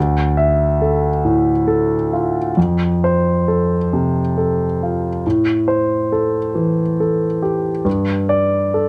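A concert grand piano carries this brief excerpt alone, its polished tone sitting up front with a deep bass and long sustain that lets each chord ring. The mechanical sound of the action is audible beneath the notes, drawing the listener close and giving the recording an intimate, present quality. In a neoclassical minimalist style, the music moves in a slow, rubato 6/8 and feels wistful and intimate, staying within a range from low D2 up to E5. The harmony passes from Dmadd9 to F, then to Am7 at 5.2 seconds and Gsus2 at 7.9 seconds, before the fragment is cut off at 8.9 seconds. A light reverb adds a touch of space around the piano.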